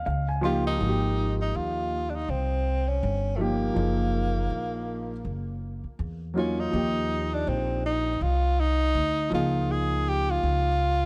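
A relaxed 4/4 groove at 81 BPM with a lazy 16th-note swing carries this smooth jazz-hop cut in Ab major, opening with a short grand piano fill in the first 0.8 seconds before the harmony moves through lush major ninth chords. Up front, a breathy tenor saxophone sings the solo melody with light vibrato and scooped notes, while a woody, thumpy pizzicato upright bass anchors the low end. A dark, mellow grand piano with audible action noise and a vintage, intimate character fills in the accompaniment until 10.7 seconds, all set in a moderate plate reverb and a dark, warm production.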